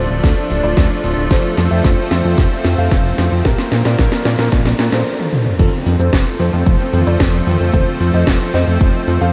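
A straight 4/4 italo disco pulse at 112 BPM is driven by a punchy, tape-warm electronic kick and a layered house kit of cracking snare, metallic hats, cabasa, crash and toms, both re-recorded in a small room; drum fills run through the opening, and the groove stops briefly at 5.1 s before F major settles in at 5.6 s. Underneath, a fat, detuned sawtooth bass sits up front with a fast attack, sustained notes and a filter sweep. A lush unison pad of detuned sawtooth and square waves holds bright, slow-attack chords with a long release, thickened by chorus and shimmer reverb. Carrying the melody, a dark, mellow baby grand piano sounds boxy and intimate, with audible action noise and short sustain, roughened by vintage 12-bit sampler grit and trailed by delay and shimmer reverb. The whole mix is dreamy and soaked in a huge ambient reverb with vinyl crackle, giving this brief cut from a longer piece a romantic, sunny glow.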